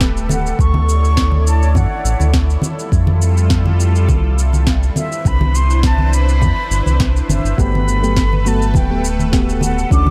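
A round, deep analog bass sits up front in this sunny, relaxed sunset chillout excerpt in G major at 103 BPM, its gently swung groove carried by a soft overdriven electronic kick, a sharp snare with shaker re-recorded in a small room, and ringing hand-played congas in the background. A breathy, distant concert flute with vibrato and digital delay carries the melody from 0.3 seconds over a lush, detuned pad treated with chorus and phaser, moving through Gadd9, Dmaj9, Fmaj9 and Cmaj9. At 7.6 seconds, gentle, warbling electric-piano-like synth keys arrive on Gmaj9, all within a dark, dry production.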